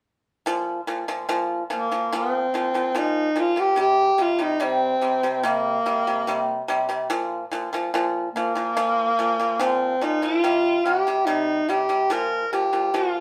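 A clear tenor saxophone carries the melody in this Mongolian traditional piece, entering at 1.8 seconds with a classical-style solo voice, vibrato and a roomy, distant quality, though it still sits up front in the mix. Beneath it, a bright acoustic pipa played with fingerpicks lays down arpeggios from 0.5 seconds, its dry, percussive attack kept close and forward. The mood is galloping and vast, moving at 72 BPM in a straight 4/4 feel in a Bb zhi mode, with the tuning set slightly below standard pitch. The harmony alternates between Bb5 and C5 chords. The band plays live together in one room, wrapped in a wet studio reverb, and this brief passage is cut from a longer piece, stopping at 13.2 seconds.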